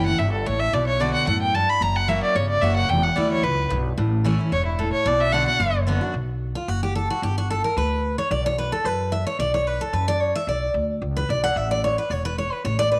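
A clear, smooth fiddle carries the melody up front from the start, its bowed line touched with light vibrato over bright, full-bodied picked steel-string acoustic guitar and a woody pizzicato upright bass in this lonesome, haunting bluegrass excerpt in B minor at a brisk 222 BPM. The fiddle takes the first solo until 5.7 seconds, and at 6.1 seconds the guitar steps forward for its own solo through a return of the same section, with the bass holding the low end to the close at 13.0 seconds. Light studio reverb gives the playing a touch of space.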